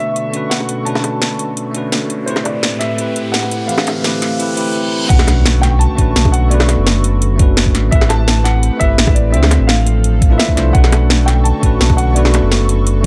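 Liquid drum and bass at 170 BPM in a straight 4/4, dreamy and rolling, cut from a longer piece. A dark, mellow baby grand piano carries the melody with long sustain and dub echo, over a bright, bell-like tine electric piano with digital delay and an airy, breathy pad of detuned, slow-attack chords with chorus and sidechain pumping. From 0.2 s a layered electronic drum kit brings a cracking snare, metallic hats and crash cymbal with a tape-warm character, joined by tight, high-tuned bongos played with soft hands in the background. The build-up sweeps through a riser and a reverse cymbal before the drop at 5.1 s, where an impact lands and a deep, full sine sub bass with an octave layer arrives up front alongside an overdriven, knocking electronic kick. The harmony moves through Bm9, Am9 and Dm9, all set in a light reverb.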